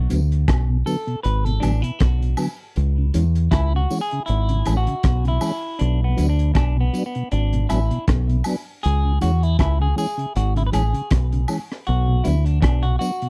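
Serious and hypnotic, this roots reggae excerpt settles into a 79 BPM groove in B dorian, swinging on the sixteenths as the chords move between Bm and C#m. A deep, round dub bass sits up front with a crunchy, saturated breakbeat kit of tight kick, hi-hat and rim click, while a mellow tonewheel organ with chorus vibrato, key click and slow rotary speaker fills in beneath, and tambourine and woodblock add a faint live-room patter. A clean semi-hollow electric guitar enters at 0.9 seconds with tape echo, and the dry, close 1970s-style studio sound keeps every part intimate.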